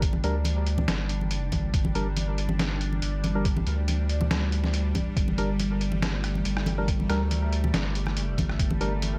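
A half-time deep dubstep groove at 140 BPM swings lightly on the 16ths, built on a muffled, thumpy, pitched-down kick and a compressed sampler-style kit of hi-hat, rim click and medium-tuned snare, with hard-handed congas sitting dry in the background, all under vinyl crackle and light reverb. Up front, a thick, saturated sub bass holds down G minor, while a hollow, dark organ stab with chorus and dub echo punctuates the space. A tense, detuned, string-like drone sustains chords above with phaser and vibrato, giving this heavy, cavernous fragment of a longer piece a bright edge.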